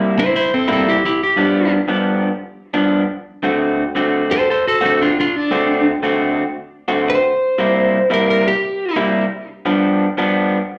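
Blues at 116 BPM with a swung eighth-note feel, this rollicking, soulful fragment of a live club gig pairs a lo-fi, slightly broken-up riff on an electric guitar through a small old amp with slapback echo against a dark, lightly driven lead guitar carrying the melody from 0.2 seconds with plate reverb and slapback, both up front over C7, G7 and D7 changes in a moderate club room heard through the venue's PA.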